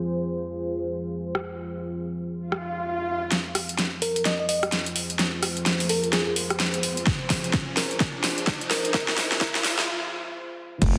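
Bouncy and swaggering, this 128 BPM bass house excerpt in F minor opens on a deep, moody pad pumping under a filter sweep, then big-room drums with a huge snare and metallic hats, a bell-like, sparkling FM electric piano melody with delay, electronic risers and swells, and a punchy overdriven kick drive a build-up from 3.3 s to a break at 9.9 s and an impact at 10.8 s, where a growling FM bass and a very quiet, dark ride cymbal arrive, all in a lush hall reverb with a dense, heavily limited master.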